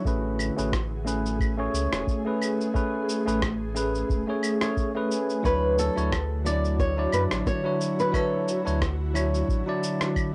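Sunset chillout at 89 BPM in D lydian with a gentle 16th-note swing and a blissful mood, where a bell-like tine electric piano with a filter sweep, cassette tape and analog delay sits up front over an ethereal, detuned pad with ensemble chorus, a round sine sub bass, a dry deep electronic kick and gritty, tape-soaked shaker, claves and rim click, until a fingerpicked flamenco guitar enters with the melody at 5.5 s as the chords move from Amaj9 to Dmaj9, all in a small booth ambience on home cassette.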